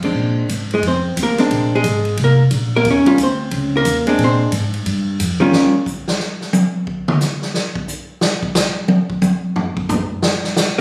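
A dark, clean hollow-body archtop guitar accompanies up front over woody, thumpy pizzicato upright bass and a swinging drum kit with a boomy kick in this playful small-group jazz cut, where a drum solo takes over from 5.5 seconds, guitar and bass stop at 5.7 seconds and the guitar returns at 10.8 seconds, captured on a phone in a moderately reverberant studio room.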